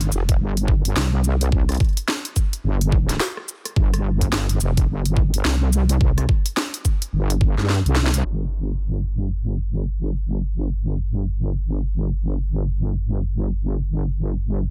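Glitch hop at 107 BPM in 4/4, this playful, funky excerpt from a longer piece rides a 16th-note swing. A heavy, wobbling bass built from detuned sawtooth and sine layers in unison carries the low end from F1 to G2 throughout, its fast attack and sustained notes saturated, compressed and thickened with chorus into a mellow yet up-front tone. Beneath it, an overdriven electronic kick with a knocking punch joins at 0.3 seconds, while a layered drum kit pairs a cracking snare and bright hats with rim clicks, shaker and crash cymbal, its overdrive tempered by low-pass filtering on the kit and its small-room sound. A drum fill from 7.7 seconds and a band accent at 8.1 seconds close the opening section, after which the drums fall away and the bass carries on alone under a filter sweep until 14.7 seconds. The mix is dry and upfront, with a low-pass filter softening the overall sound.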